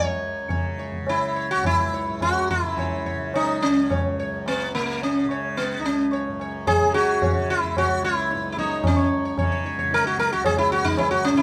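Sitar, bright and round with buzzing sympathetic strings, carries the melody up front in this solemn, introspective Hindustani classical passage, cut from a longer piece and set at 110 BPM in an uneven 4/4 that gradually speeds up. A softly plucked tanpura drone shimmers quietly beneath it, while low-tuned tabla with a short ring enters at 0.5 seconds, sounding distant as if in a larger space. A moderate small-room reverb surrounds the performance, and a new section begins at 8.8 seconds.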